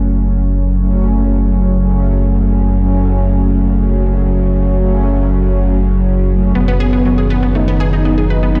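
A straight 4/4 pulse at 120 BPM drives this dark, melancholic techno passage in F# dorian, cut from a longer piece. A round, deep analog bass sits up front on F#1, while a brassy, bold pad fires stabs through chorus and dub echo. Behind them a moody, detuned pad holds sustained chords with chorus, and a filter sweep runs on an analog pad across the full span. From 0.8 seconds a tense, string-like drone with vibrato and its own reverb hums low in the background. At 6.6 seconds the harmony moves from F#m to Badd9/F#, and a thick unison lead carries the melody through delay, joined by a lush, punchy pluck playing arpeggios into dub echo. The whole mix sounds as if played on a big sound system in a bare stone room, with a digital ambience.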